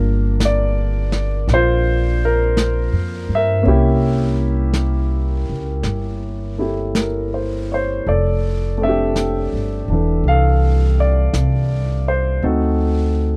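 Romantic and intimate, this short jazz ballad excerpt moves at a slow 55 BPM in 4/4 with a swung eighth-note feel in F major. A grand piano sits up front with a natural tone, comping in the middle register, while a pizzicato upright bass on gut strings sounds woody, dark and thumpy, placed close and prominent in the mix. A vintage brush kit joins at 0.4 seconds, its medium-tuned snare and hi-hat played with brushes in a small room, with a softened, rolled-off top and a low place in the balance. The harmony opens on Gm7 moving to C7b9, then shifts at 8.1 seconds into a new section that settles on F69 before turning to D7b9 near the end. The sound is dry and close, in the manner of a 1970s studio session, with little reverb, and the excerpt is cut from a longer piece.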